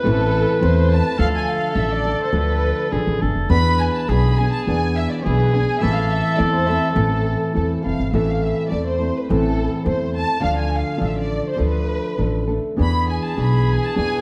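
A lush, dark-toned violin section carries the melody in this festive, proud mariachi-style Mexican folk passage, bowed with expressive vibrato and a smooth top end. A clear cor anglais with light vibrato plays a second line in a classical solo style, drops out at 7.8 seconds and returns at 12.8 seconds. Up front, a fingerpicked nylon-string guitar gives classical accompaniment, while a woody, thumpy upright bass with gut strings plays pizzicato beneath it from 0.1 seconds. The music moves at 104 BPM in 2/4 with a rubato feel, in A harmonic minor, with the chords cycling through Am, Dm and E7 across two statements of the same section. A moderate recital hall reverb surrounds the ensemble, and the passage is cut from a longer piece.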